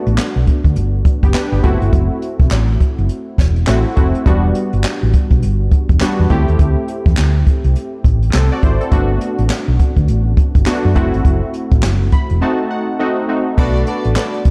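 A dark, warm mix with a small-room ambience gives this punchy, slick slice of new jack swing R&B its character, cut from a longer piece. A brush-played acoustic kit sits up front with a boomy kick, a high-tuned snare, handclaps, hi-hat and dusky crash cymbals, all riding a swung sixteenth-note feel. Beside it, a round, amped hollow-body electric bass, fingered on a short-scale instrument, also sits up front and holds the low end with a shadowy tone. Analog keys with detuned sawtooth voices, filter sweeps and chorus supply the accompaniment over a jazzy progression moving from Gmaj7 through F#m7b5, Em9 and D9sus4, with a keys fill arriving at 11.8 seconds. The drums drop out at 12.4 seconds under an Adim7 chord, and at 13.6 seconds a brief, bowed studio string stab with vibrato, portamento and digital delay lands softly in the background on Bm7.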